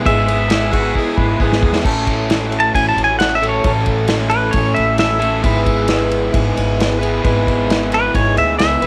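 Nostalgic and open-road in spirit, this short excerpt of folk rock and heartland rock moves at 133 BPM in a straight 4/4, with the whole small band captured as a home recording on cassette in a small room. A dark, boxy old ladder-braced acoustic guitar is picked in the background while a double-tracked overdriven electric guitar plays a riff, and a very quiet, flute-like tonewheel organ holds soft chords through a slow rotary speaker with audible key click. Up front, an unplugged drum kit played with bundle sticks gives a punchy kick, a medium-tuned snare and dark cymbals, joined by a woody, thumpy pizzicato upright bass on steel strings. A smooth-topped harmonica with light vibrato slips in a brief second line between 0.7 and 1.7 seconds, overlapping a drum fill that leads from the opening E/G# chord toward A6. From 1.8 seconds the twangy, compressed pedal steel guitar, played with fingerpicks and slide and shaped by volume swells, takes an up-front solo that carries on to the end as the harmony returns to E/G#.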